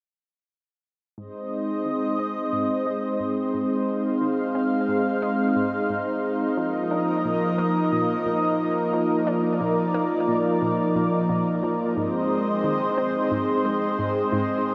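A straight 4/4 pulse at 89 BPM underlies this cosmic, expansive ambient passage in Ab lydian, cut from a longer piece. Up front, a lush unison pad of detuned sawtooth and square waves holds sustained chords from 1.2 to 14.7 seconds, its thick, warbling, vintage tone softened by a slow attack, long release, chorus and shimmer reverb. Deeper in the background, an analog pluck plays a riff with a round, nasal, wave-folded character, its fast attack decaying through chorus, delay and shimmer reverb. A fade-in on the synth arpeggio sound runs across the whole passage. The harmony moves from Ab to Bbsus4 at 6.6 seconds and returns to Ab at 12.0. A huge, wet ambient reverb and the texture of cassette tape wrap the music in a hazy, spacious glow.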